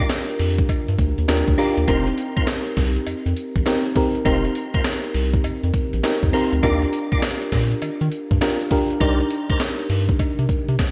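A mellow FM electric piano, a percussive tonewheel organ and a round analog bass start together, joined at 0.1 s by a breakbeat sampler-style drum kit and a cowbell in this slick, bouncy new jack swing excerpt at 101 BPM in 4/4, with a 65% swing on the sixteenths. The electric piano sits up front with a soft, chorused FM tone and a faint noise layer, its fast-attack notes decaying as it carries the chords from Ebmaj9 to F7sus4, back to Ebmaj9 and on to Cm9. The organ adds mellow stabs with key click and third-harmonic percussion, colored by chorus vibrato, a fast rotary speaker and delay, and it stops at 9.6 s. Beneath them the deep, sustained bass blends square and sine tones, while the gritty, compressed drums hit with a thumpy kick and a high-tuned snare under gated reverb, alongside hi-hat and tambourine, and the very quiet, close, metallic cowbell ticks in the background. A lush hall reverb and a bright 1980s-style digital production sheen tie the R&B groove together before the fragment cuts off at 10.9 s.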